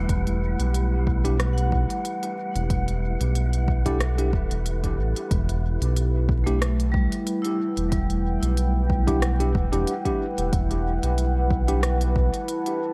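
Ambient dub in E minor at 92 BPM with a lightly swung 16th feel, this hazy, deep excerpt sets a round, up-front analog bass and a background overdriven electronic kick under an organic electronic kit of smooth overdriven hats and rim clicks, while a moody detuned pad holds sustained chorused chords, a metallic ringing vibraphone spins dub-echoed arpeggios, an airy wind-like noise texture breathes through the first 5.3 seconds, and a worn, slightly out-of-tune tine electric piano adds gritty echoed stabs from 1.2 seconds, all over a bed of vinyl crackle.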